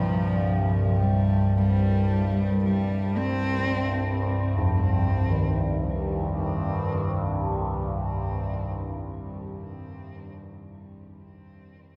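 Bathed in a vast cathedral reverb, this ominous dark ambient drone moves slowly at 56 BPM, cut from a longer piece. Up front, a resonant sawtooth-and-sine drone with moving overtones, chorus and phaser sustains through the low register until 8.9 s. Bronze, beating gamelan-type bossed gongs play round arpeggios with delay in the background. A single close, woody cello sings a bowed sul tasto melody with vibrato until 4.2 s. The harmony shifts from an open C to C minor at 5.3 s.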